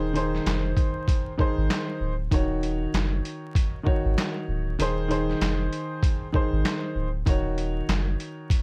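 A woody, vintage upright piano, tinted by cassette tape and plate reverb, opens over a deep, round dub sub bass, moving between rootless Fm7/Eb and Ebm7 chords, before a muffled, pitched-down sampler-style trip hop kit of thumpy kick, medium-tuned snare, hi-hat and handclaps enters at 0.2 seconds with a swung boom-bap feel, giving this dark, reflective hip hop fragment its shape beneath vinyl crackle and light reverb.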